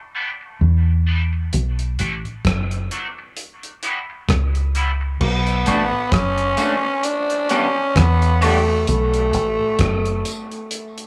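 Hypnotic and spacious, this dub reggae excerpt opens on a twangy, slightly broken-up electric guitar with chorus and dub echo, joined by a round, punchy, foam-muted fingered bass and a damped 70s kit with tight kick and dark cymbals, before a raspy, growling tenor saxophone takes the solo at 5.2 seconds over a background of tambourine, woodblock, egg shaker and group handclaps, all set in moderate spring reverb.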